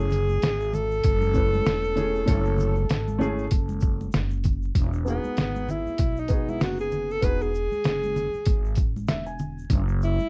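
Mellow and cool, this short jazz-hop cut from a longer hip hop piece moves at 97 BPM with a 16th-note swing, built on a muffled, pitched-down sampler drum kit with a thumpy kick, a woody pizzicato upright bass on gut strings, and a dark concert grand piano whose action noise adds intimacy, while congas and a tube shaker sit in the background. A breathy, whispered alto saxophone with warm vibrato and a soft attack carries the melody and takes a solo from 4.8 seconds as the harmony moves from F#m7 to Emaj9, and the piano adds a fill at 8.8 seconds. The dry, close 1970s-style sound is dusted with vinyl crackle.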